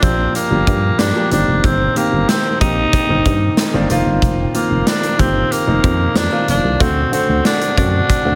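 A straight 4/4 groove at 93 BPM drives this dramatic, moody 1980s-style pop excerpt, with a big rock drum kit of punchy kick, medium-tuned snare and hi-hat sitting up front in gated reverb, while a round, fast-attack FM bass holds down the low end. A polished grand piano fills in the accompaniment as a breathy, raspy tenor saxophone carries the melody up front with a gritty, vintage pop tone. The harmony moves through Gm7, Cm7, F7sus4 and D7, all set in light reverb and small room ambience.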